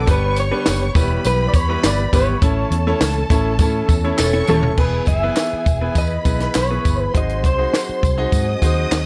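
Uptempo 1960s-style soul at 102 BPM in a straight 4/4, this joyful, uplifting passage is cut from a longer piece and settles into E major from 4.8 seconds. A dark, slightly broken-up electric guitar carries the melody through a small old amp with tremolo, joined by a lush, bowed studio string section playing a second line with expressive vibrato. Underneath, a round, foam-muted electric bass sits punchy and up front, while a brilliant grand piano adds accompaniment and a very quiet tonewheel organ holds smooth sustained chords with key click and slow rotary speaker. A compact cocktail kit with a high-tuned snare, tight kick and dark cymbals drives the groove alongside tambourine, maracas and group handclaps. The band hits accents from 2.4 to 4.8 seconds, capped by a drum fill, and a clear saxophone section with light jazz vibrato and slapback echo slips in briefly at 3.9 seconds. The harmony moves from G through Em and A to E, closing on G#7, all set in a small room ambience.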